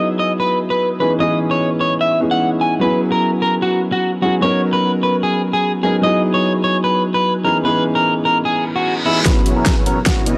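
A half-time 4/4 future bass groove sets a bright, playful mood as a warm, slightly broken-up electric guitar carries the melody with sidechain pumping, low-pass filtering and tape echo over an intimate, vintage-toned grand piano whose action noise is audible, until a reverse cymbal and riser at 8.7 seconds lead into a build-up at 9.3 seconds, where a thick, detuned supersaw riff takes a filter sweep, a barely audible sine 808 bass sustains beneath, and up-front dubstep drums with a huge snare and bright hats join a distorted electronic kick in a drum fill, all in a lightly reverberant space.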